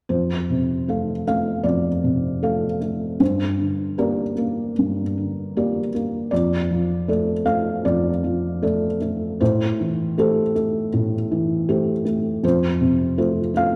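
Classical and hopeful, this intimate 78 BPM passage in F major unfolds with a gentle rubato on a lone felt-muted upright piano, whose dark, mellow tone, short sustain and audible action noise sit up front in a church-like hall's lush 1.6-second reverb as the chords move from F through Gm, Dm/F and Am7 before settling back on F at 12.4 seconds.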